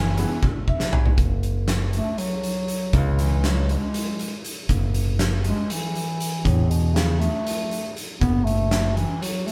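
A mellow bass clarinet and a bright, punchy fingered electric bass open this intricate, driving progressive excerpt in F# minor at 239 BPM in 7/8, joined at 0.2 s by an oversized, low-tuned drum kit with a fat snare, boomy kick and gritty, saturated room sound, while a warm grand piano adds a brief fill alongside a drum fill before the smooth-topped bass clarinet takes a classical-style solo from 1.2 s to the end, all played live in a small, reverberant room.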